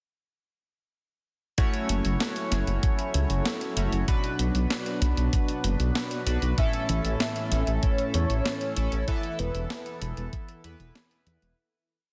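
A dense, heavily limited modern master with light reverb and digital ambience frames this short, driving and cinematic synthwave piece in a straight 4/4, moving from F#m7 through Bm and A to Esus4. At 1.6 seconds the band enters together: a knocking, up-front electronic kick, a clean 12-bit drum machine with a tape-warm, medium-tuned snare backbeat and closed hi-hat, a glossy chorused polysynth holding drop-2 chords with syncopated pushes and tape echo, and a swirling, wave-folded analog pad sitting in the background with phaser, chorus and sidechain pumping. A deep, rumbling detuned saw bass, saturated and up front, joins just after with a galloping sixteenth-note line and sidechain pumping. At 6.6 seconds a velvety synth lead arrives with mellow vibrato, chorus and tape echo, playing short hook phrases. A fade-out begins at 8.2 seconds, with the kick dropping out near 10.5 seconds and the lead already finished as the pad rings out last.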